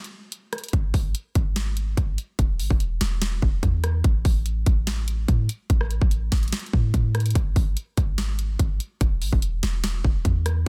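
A dense, heavily limited and nearly dry mix carries this dark, brooding trap excerpt at 145 BPM in a half-time feel, tuned to A4 = 436 Hz, where an up-front electronic kit of hard-clipped kick, sharp snare, rim click and bright hi-hats, re-recorded in a small room, opens alone before a deep, boomy, clean sine 808-style bass with a fast attack and decaying tone enters at 0.7 s, moving between E1 and A2.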